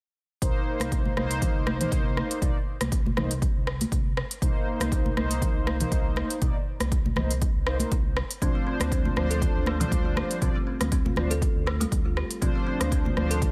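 An overdriven, punchy electronic kick sits up front in this earthy, hypnotic afro house excerpt, driving a 120 BPM groove in 4/4 with a 16th-note swing in C dorian. Around it, an afro-pop drum kit adds smooth hi-hats, rim clicks and toms in a small room, while close, dry congas with a thick, high-tuned skin and hard hands sit in the background from 0.8 seconds. A smooth, dark gliding synth bass with portamento and sidechain pumping holds the low end, as mellow synth brass stabs, detuned and ring-modulated with chorus, filter sweeps and delay, fill the middle. At 8.4 seconds the harmony moves from Cm7 to Dm7 and a woody, hollow-boxed kalimba enters with ringing arpeggios, carrying vintage 12-bit sampler grit, delay and sidechain pumping. A digital ambience surrounds the mix.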